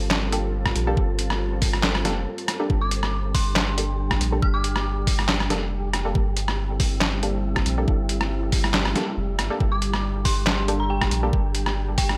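A half-time 139 BPM groove in 4/4 with a light 16th-note swing drives this dark, brooding deep dubstep excerpt in G dorian, built on a tape-warm knocking electronic kick and a gritty, pitched-down sampler-style trip hop kit of snare, hi-hat, rim clicks and handclaps sitting up front, with a brief break at 2.3 seconds. Underneath, a round, soft dub sub bass holds the low end while a moody, detuned sawtooth analog pad sustains a Gmadd9 chord in the background, joined by a breathy, wind-like noise texture and muted filtered chord stabs carrying chorus and dub echo. An eerie, inharmonic FM bell melody with its own dub echo enters at 2.8 seconds and returns at 9.7 seconds, all set in a light reverb.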